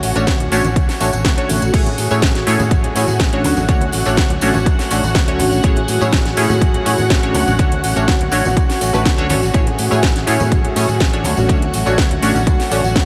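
Filtered disco house at 123 BPM in a straight 4/4, feel-good and sunny, this excerpt sways between Dmaj7 and Amaj7 inside a huge, dreamy ambient reverb, with a punchy, up-front electronic kick arriving at 0.3 seconds and a funky, warbling sawtooth polysynth comp with chorus and phaser sitting loudest among the other parts. Around them, a lush vintage string machine holds slow-blooming ensemble-chorused chords, a dark, round fingered bass anchors the low end, and a clean, direct-recorded electric guitar riff sits in the background. A house kit with cracking snare and metallic hats, plus ringing, close tambourine and soft-handed congas, all breathe with sidechain pumping.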